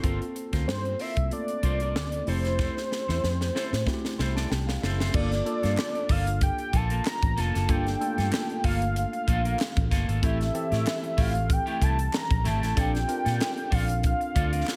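Set in a small room ambience with a polished, studio-clean finish, this cut from a longer piece is 1980s jazz-funk pop with a nocturnal, bittersweet mood and a lightly swung sixteenth-note feel. Up front, a crisp fusion drum kit with a high-tuned snare, punchy kick, hi-hat and crash cymbal sits in gated reverb. Beside it is a dark, round, foam-muted vintage fingered electric bass with an amped tone. A worn, slightly out-of-tune tine electric piano with subtle chorus carries the accompaniment. A bright, picked clean electric guitar plays a riff through lush chorus. From 0.7 seconds a fat analog lead with detuned sawtooth, a sub octave, ring modulation, vibrato and chorus sings the sustained melody over chords moving from Gm11 and Fmaj7 to Gm9, Fmaj9 and Bbmaj7. A drum fill from 2.6 seconds, joined by an electric piano fill, leads into the next section, where very quiet group handclaps enter at 5.8 seconds.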